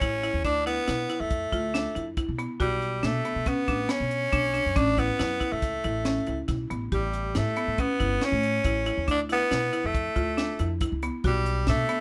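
A raspy, gritty tenor saxophone sits up front with a forceful vibrato melody in this bright, intricate progressive instrumental excerpt at 139 BPM in 5/4 and A mixolydian, carried by a buzzing, band-limited marimba's hard-mallet arpeggios, a woody, thumpy pizzicato upright bass on gut strings, and a dry funk drum kit with a high-tuned snare and tight kick, all in a moderate studio ambience over chords moving from Dmadd9 to Bm7, A and A7.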